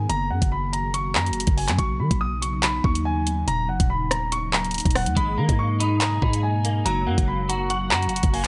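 Menacing and tense, this drill cut rides a half-time 142 BPM groove in 4/4, with a dark, mellow concert grand piano carrying an up-front melody over an airy, detuned pad whose chorus and built-in reverb blur the chords from F# through Badd9, D#m7 and G#madd9. A growling, buzzy 808-style bass with a fast attack anchors the low end, while an electronic drum kit with a knocking kick, tape-warm hi-hats, handclaps and rim clicks sits up front from 0.1 seconds. At 5.2 seconds a clean, picked electric guitar with chorus joins, compressed and tucked beneath the piano, in a dry mix.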